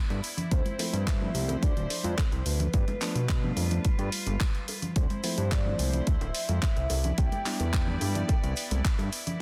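A straight 4/4 nu-disco groove at 108 BPM sets a groovy, sensual mood in this short cut from a longer piece, with a punchy, tape-warm electronic kick sitting up front from 0.5 seconds. A layered house drum kit adds handclaps and hi-hat with soft clipping on the snare, while bongos, tube shaker and congas sit in the background with a bright, vintage, band-limited tone. The fat analog bass is thick, detuned and sawtooth-based, saturated through tubes and placed up front. Rich chamber strings hold bowed chords with light vibrato and a reedy, gut-string period tone, pumping under sidechain, as a worn, slightly out-of-tune tine electric piano with delay plays accompaniment in the background from 0.8 seconds. Over a Cmaj9, Dm9 and G7 progression, a soft, octave-layered synth lead carries the melody, round and mellow with a sub octave, wave-folding, chorus, cassette tape colour and digital delay, until 8.8 seconds. 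The mix is dry and dense, with a heavily limited modern master.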